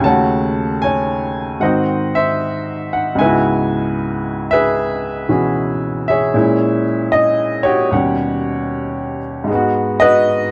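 Swung eighth notes at 76 BPM in 4/4 set a cool, moody feel for this solo jazz passage in C# minor, cut from a longer piece and tuned to A4 = 439 Hz. A clear, woody upright piano plays alone from 0.0 to 10.5 seconds, spanning C#2 to A5 with a natural, long sustain. It moves through minor ii–V changes such as D#m7b5 to G#7 and C#m7, then shifts into a new section on G#m7 at 9.5 seconds. The piano sits up front in a dry, close 1970s-style studio sound with light reverb.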